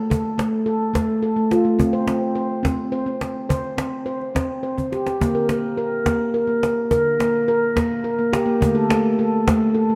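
Hypnotic and meditative, this world-music fragment drifts at 70 BPM in a straight 6/8. An up-front, ringing stainless-steel handpan, played with the fingertips and touched by analog delay, arpeggiates from D3 to C5 over C5, a rootless Gm/D and A5/D chords. A softer, woody cajon with faint snares adds a short drum fill from 4.8 to 5.2 seconds, all bathed in a dark plate reverb.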